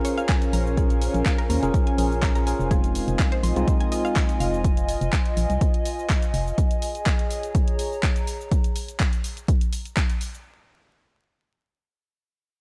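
Vinyl crackle and light reverb frame this hypnotic, smooth deep house passage, cut from the drop of a longer piece, which opens with clean, bright tine electric piano stabs through tape echo, a woody, round mallet-like synth pluck arpeggiating in the background with vintage 12-bit sampler grit and analog delay, a soft, breathy pad and a warbling, nostalgic tape-like pad, each of these pumping with the sidechain over layered handclaps, hi-hat and shaker; a punchy, up-front kick enters at 0.3 s and a hollow, dark, organ-like FM bass at 0.5 s as the harmony moves between Bbm7 and Fm7, with the bass and both pads gone by 8.5 s.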